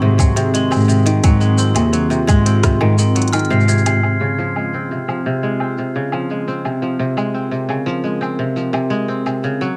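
A lightly reverberant folktronica piece in Db major at 86 BPM, delicate and pastoral, in which a bright, up-front fingerpicked kora plays filtered, delayed arpeggios over a warbling, detuned, lo-fi tape-like pad holding sustained chords on Ab7 and Dbmaj7. A dark, reedy bowed cello carries the bass until 3.9 s alongside a tight electronic kick that drops out at 2.8 s, and a mellow glockenspiel with soft plastic mallets adds a bell-like second line through tape echo. An organic electronic kit of smooth hats, rim click, shaker and woodblock runs throughout, with a filter sweep on the kora from 4.0 s.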